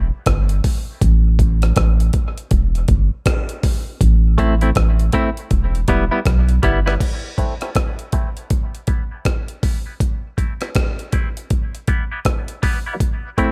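Set in a digital ambience, this hypnotic, meditative dub reggae fragment in A minor moves at 80 BPM with a swung 16th-note feel, opening on a break where a deep, round sub bass carries the low end until 7.0 seconds, alongside a gritty, compressed sampler-style drum kit with a thumpy kick, hi-hat, rim click and crash. At 4.4 seconds a bright, clean semi-hollow electric guitar enters with picked, hollow-body accompaniment, run through high-pass and low-pass filters and dub echo, with a filter sweep across its part. After a brief chordless pause early on, the harmony rocks between Em and Am.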